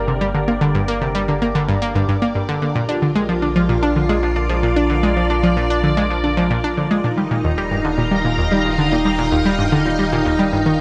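Ambient, sequencer-driven space music at 112 BPM in 4/4, this excerpt from a longer piece carries a cosmic, hypnotic mood across its 10.8 seconds. A bright, up-front analog pluck drives the riff in the low-to-middle register, its sawtooth and square-wave tone roughened by a noise layer and ring modulation, with a filter sweep and chorus shaping each fast-attack, short-decay note and tape echo trailing it. Alongside it, an up-front, lush vintage string machine holds sustained chords with a slow attack, its sawtooth voice thickened by a sub octave, a moving notch and ensemble chorus into a mellow, full pad. A very quiet concert harp rings through fingerpicked arpeggios, while a round analog bass sits deep and dark beneath, its nasal triangle and sine tone shaped by a filter pluck. The harmony moves from Gm to Bb at 2.8 seconds and settles on Ebadd9 at 7.0 seconds, all bathed in a moderate plate reverb.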